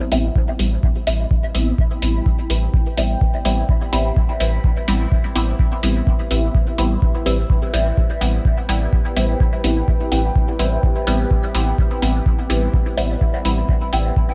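A muted, nasal chord stab with a phaser, pumping sidechain and dub echo leads this hypnotic, deep dub techno excerpt at 126 BPM in A minor, circling an Am9 chord over a round, soft sub bass and a deep, up-front analog kick from 0.4 seconds. A muffled, overdriven and pitched-down hi-hat ticks with a 16th-note swing, while a moody, detuned pad enters at 2.0 seconds in the background, chorused and reverberant. A bubbling, resonant stepped-filter texture sits faintly behind the mix, all under a light reverb.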